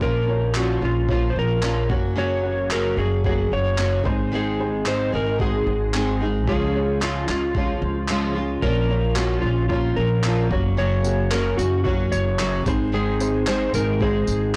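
The recording sounds blown-out and overdriven, set in a moderate studio reverb, in this tender, reflective acoustic pop excerpt at 111 BPM in straight 4/4 and Bb minor. A dark, slightly broken-up electric slide guitar carries the melody through a plate reverb, over a progression that moves from Bbm through Gb, Ab and Db before returning to Bbm. A full-bodied, fingerpicked nylon-string guitar sits up front, double-tracked and given the same plate reverb, while a worn, slightly detuned upright piano plays boxy, short-sustained accompaniment in the background, its action noise audible. The pizzicato upright bass is woody and thumpy, roughened by transformer saturation. A gritty, compressed sampler-style drum kit with handclaps, kick drum and tambourine carries a tape-warm character and the sense of a large room, and it stops at 14.4 seconds, just before the other parts end at 14.6 seconds.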